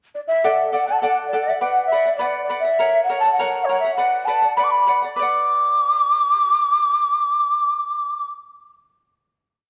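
Wistful yet festive, this short Andean folk piece in 2/4 features a breathy, woody large quena with a crisp, chiffy attack and expressive vibrato, which sings a motif-based song melody from 0.1 seconds over a shimmering acoustic charango whose double strings and open chord shapes carry the accompaniment until a final chord rings out at 5.2 seconds, the pair sitting up front in a room filled with wet spring reverb that is heard from further back.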